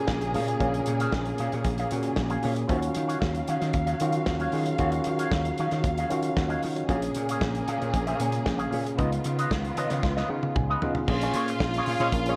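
A worn, slightly out-of-tune tine electric piano and a lush, bowed string section open this sultry, glamorous disco excerpt over punchy slap bass, a soul drum kit with dark cymbals and a tight kick, and a bright, twangy guitar through an envelope filter, with piano and drum fills leading to 11.1 seconds, where a rich, up-front string section enters on a second line and a mellow, distant horn section adds brief octave-doubled stabs at 12.0 seconds, set in light reverb and small-room ambience.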